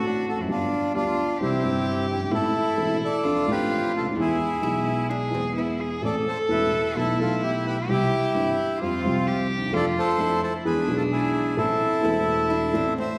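A reverberant church or concert hall ambience surrounds this dramatic, melancholic tango fragment, played with a loose rubato feel. Up front, a reedy, smooth bandoneon carries the melody over a dark, woody, slightly detuned upright piano, while a solo cello bowed sul tasto with light vibrato and an airy tone sings an intimate second line. A very quiet, clean, hollow-body archtop guitar adds brief picked phrases at 4.6 seconds and again from 12.0 seconds until the end at 13.2 seconds.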